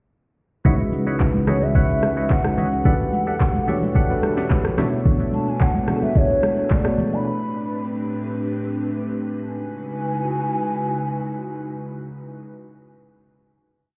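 Amapiano at 109 BPM in C# phrygian with a late-night, deep mood, where an up-front electronic R&B kit with a tape-warm soft kick, sharp snare, handclaps, steady shaker and syncopated rim drives the groove alongside background congas with a bright, thin-skinned, close and dry tone, as round, mellow electric-piano-like synth keys play syncopated rootless chords with grace notes, dark organ-like stabs punctuate from 0.6 to 4.9 s, a breathy, warbling vintage pad with sidechain pumping holds chords through C#m11, Em11, Bm11 and Am11, and a woody clarinet-like lead with vibrato carries a motif-based melody from 1.5 s on through the final C#m11 chord that arrives at 9.5 s, all heard muffled as if through a wall in a stone room.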